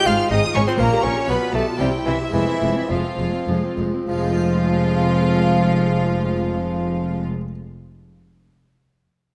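Heard in the moderate reverb of a scoring stage, this short, dramatic slice of a driving baroque-style concerto movement in 3/4 puts a clear, up-front solo bassoon on the melody while an intense chamber violin section also carries it high above, a lush studio violin section plays a focused second line, a warm viola section and a smooth cello section sit in the background with a close, expressive double bass section, and a dry, brilliant harpsichord plucks its accompaniment behind them as the pulse slows through the first 4.1 seconds.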